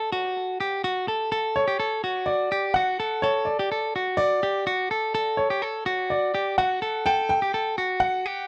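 A woody upright piano carries the melody from 1.6 seconds, sitting up front over a clean, picked electric guitar that plays compressed arpeggios from the very start on an F# minor chord. This breezy, bright indie pop fragment moves at 126 BPM in a straight 4/4, with both instruments close and present in a small, moderately reverberant room.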